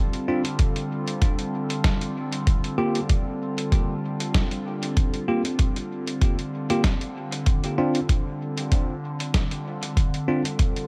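Hazy and meditative, this ambient dub excerpt moves at 96 BPM in 4/4 with a light 16th-note swing, built on a warbling, nostalgic pad of detuned sawtooth and triangle tones that sustains Dm7, G7(no3) and back to Dm7 through chorus, phaser and its own reverb. A bell-like tine electric piano adds bright, clean stabs carrying dub echo from 0.3 seconds, while a lo-fi sampler-style kit of hi-hat and medium-tuned snare, pitched down, muffled and overdriven with dub echo, sits beneath. Up front, a thumpy, compressed electronic kick drum with overdrive enters at 0.6 seconds, and the whole mix sits in a light reverb.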